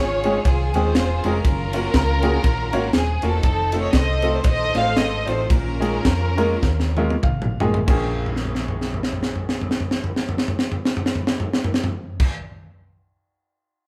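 Swung eighth notes in 4/4 drive this fervent, solemn slice of uptempo gospel, taken from a longer piece, and the band gradually slows down from 3.4 s before the next section begins. Up front, a dark, lush studio string section carries the melody with vibrato and a smooth, bowed ensemble tone until it stops at 7.2 s. A bright, woody upright piano fills out the accompaniment across a broad range and adds its own fill just before the new section. Underneath, a round, amped hollow-body electric bass plays fingered lines, while a crisp acoustic kit with a punchy kick and high-tuned snare pumps in a small room sound, playing a fill from 6.6 s and another from 8.2 s. The whole band plays live together in one room, with moderate large studio reverb lending a fervent, churchlike glow over chords that move from Dbmaj7 through Gbmaj7 and F7 to Bbm7.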